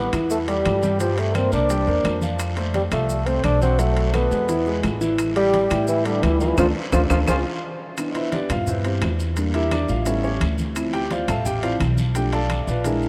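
A lively, sunny stretch of Afro-Cuban jazz, cut from a longer piece, opens with a bassoon carrying the melody in a close, classical style with light vibrato, while a clear, soft-edged trombone plays a quieter second line above it. From the start, a warm, intimate grand piano accompanies them up front with deep bass and long sustain, its action noise audible, as a dark, thumpy gut-string upright bass is plucked up front at a brisk 172 BPM in straight 4/4 in C major. A small percussion section fills in behind: ringing congas, raspy guiro, grainy maracas, woody claves and very quiet metal-shell timbales. A band accent arrives at 6.6 seconds and a drum fill at 7.1 seconds, with the horn lines closing at 7.4 seconds, after which the piano takes a solo from 8.0 seconds to the end at 13.1 seconds, over chords such as Cmaj9, A7 and Dm9. The whole group sits in a vast, echoing cathedral-like space that gives the sound a long, wet tail.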